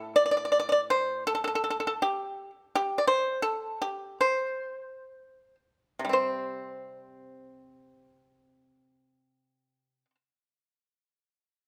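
Close, detailed microphones and a light reverb frame this short passage, cut from a longer piece of Chinese traditional music for solo pipa, elegant and pastoral in mood. Played with fingerpicks, the acoustic pipa sits up front with a dry, percussive attack and a warm body, ranging from A2 to D5 in a free, rubato 2/4. The playing slows between 2.7 and 6.1 seconds before a new section begins at 6.1 seconds.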